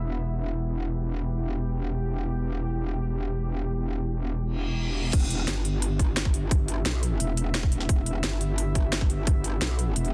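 Dark technical drum and bass at 174 BPM in E minor, tense and futuristic, this excerpt opens on a deep, moody detuned pad holding sustained chords with chorus, reverb and sidechain pumping over an aggressive, metallic wobble bass, before a reverse cymbal at 4.5 seconds leads into a drop at 5.1 seconds where a tight, overdriven kick and an up-front kit with cracking snare and crisp, filtered hats come in within a dense, heavily limited digital mix.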